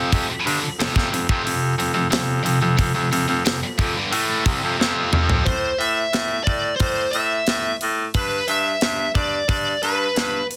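A punchy baritone saxophone carries the bass line in this driving, heavy hard rock excerpt in A minor at 90 BPM, its forceful, vibrato-laden vintage tone sitting up front throughout. In the opening section, a double-tracked, high-gain electric guitar grinds out a distorted picked riff over an F5 chord. A tight metal drum kit of hi-hat, kick, snare and toms drives underneath, with soft clipping giving the kick and snare extra bite. A drum fill at 4.8 seconds leads into the second section at 5.5 seconds, where the riff guitar stops and a smooth overdriven lead guitar takes up the melody, its picked notes trailed by tape echo as the harmony moves from A5 to G. The sound is dry and close, with a dense, heavily limited modern master.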